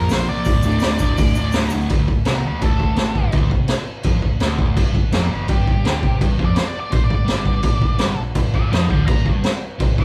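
A gritty, raw garage rock excerpt captured as a band playing live in one large studio room, with a moderate reverb tail hanging around the instruments. At 167 BPM in a straight 4/4 and D minor, the raw drum kit sits up front with a punchy kick, a high-tuned snare, hi-hat and crash, its saturated sound carrying a rolled-off top. A double-tracked fuzz guitar drives a picked low riff throughout, while a hollow-body short-scale bass, round and very quiet, rumbles beneath it. A dark octave-fuzz lead guitar carries the melody from the start, and during a short opening a grainy tube shaker ticks in the background until 1.9 seconds, when the lead breaks into a solo that runs to the end. The harmony moves through D5, Dm, G5 and Bb5 beneath that snarling line.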